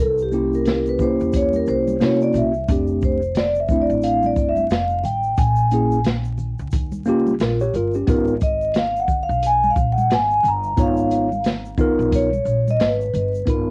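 Vinyl crackle and cassette tape color this mellow, smoky jazz-hop clip, cut from a longer piece and set in a snug home-recorded booth. Up front, a soft-mallet vibraphone plays a metallic, ringing solo with slow motor vibrato and tape echo from the opening second. Around it sit a clean tine electric piano, a woody pizzicato upright bass, a dark, boomy open jazz kit with rolled-off top and a swung 16th-note feel, and a faint, close egg shaker and congas in the background.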